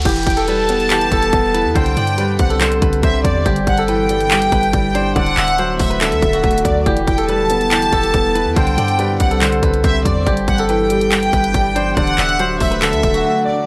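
Eerie and hard-hitting, this half-time trap cut in E minor at 141 BPM sets a silvery, fingerpicked steel-string zither melody, softened by a low-pass filter and tape echo, over a boomy, clean 808-style bass and a trap kit of hard-clipped kick, bright hi-hats, handclaps and crash cymbal that cuts out at 13.2 s. An intimate grand piano with audible action noise cycles through Em7, Csus2, G6 and D, while a floating, bowed violin section sits up front with its own tape echo and a very quiet, ethereal pad holds sustained chords beneath. A background riser and downlifter sweep through the first 3.5 seconds, and the whole mix has a dry, gritty hardware character.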